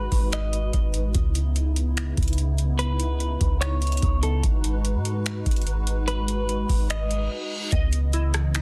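Dense, heavily limited and faintly lossy in a digital ambience, this ethereal, hazy cloud-rap excerpt in C# minor moves at 146 BPM in a half-time feel, with a booming analog drum machine's deep kick, metallic hats, snaps, rim clicks and softly clipped snare sitting up front beside a round, dark 808-style bass, while a hollow, flute-like pad pumps under ensemble chorus through G#m7 and C#m9, a clean electric guitar melody trails tape echo until 7.3 s, and a reverse cymbal at 7.1 s ushers in a crystalline, warbling wavetable pluck arpeggio at 7.7 s.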